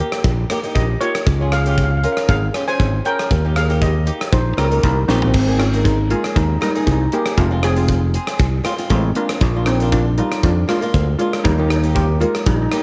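Shimmering steel pan struck with hard rubber sticks carries the melody over warm, fingerpicked flamenco guitar from the opening of this carefree, sunny calypso excerpt in Ab major at 118 BPM, joined almost at once by a gated 80s drum kit with a punchy kick and bright cymbals and by a growly, up-front fingered electric bass, with a drum fill at 5.1 seconds leading into a repeat of the opening passage, set in light reverb and small room ambience.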